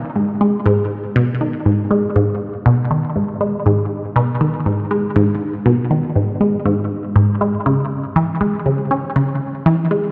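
Ambient music with an expansive, mysterious mood, moving at 120 BPM in a straight 4/4 feel. A single resonant blip pluck plays alone for the full 10.1 seconds of this short passage cut from a longer piece, ranging from G#2 to C#4. Its sawtooth tone is juicy and squelchy, with detuned voices, a fast attack and short decay, and a moving notch shaping the filter pluck. Chorus, phaser and tape echo colour the synth, which sits up front in the mix. A wet plate reverb with a 3.4-second tail surrounds it, and the production as a whole leans dark and warm.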